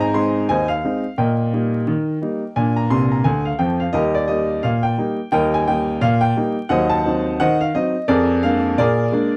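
A woody, up-front upright piano plays solo from the first moment in this short, playful ragtime cut from a longer piece, with a cheerful swing in 2/4. The piano covers a broad range from deep bass to bright upper notes, adding a fill at 2.9 seconds, and its chords move from Ab through Eb and Bb to a diminished colour before settling on Bb7. The sound is dry and close, like a 1970s studio recording, with a natural tone and a layer of vinyl crackle.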